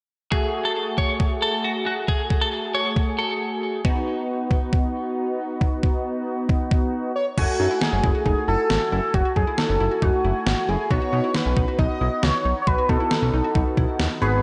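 A bold, retro octave-doubled sawtooth lead with vibrato and chorus takes the melody from 7.2 seconds in this driving, nocturnal synth-pop excerpt at 136 BPM in F# dorian, joined at 7.4 seconds by a fat, detuned analog bass and a round background pluck playing arpeggios, over a punchy, funky polysynth comp and an overdriven 8-bit drum machine with a thumpy kick and fat snare, which both play from the start alongside a clean, picked electric guitar with spring reverb heard only briefly until 3.3 seconds, all set in a lush hall reverb for a big arena sound.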